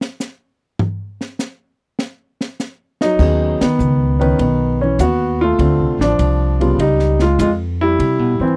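A swung 4/4 at 100 BPM sets a sophisticated, playful jazz piano trio mood in this short excerpt. A compact cocktail drum kit opens with a solo, its dark, smooth sound built from crash and ride cymbals, hi-hat, toms, a high-tuned snare and a punchy kick. The grand piano arrives at 3.0 seconds with an intimate, up-front melody, its action noise audible beneath the natural tone. Pizzicato upright bass with steel strings follows at 3.2 seconds, woody and warm, as the harmony moves from Badd9 through Dm7 and C# to Cmaj7, with a band accent at 3.5 seconds. The dry, close recording has a 1970s studio character.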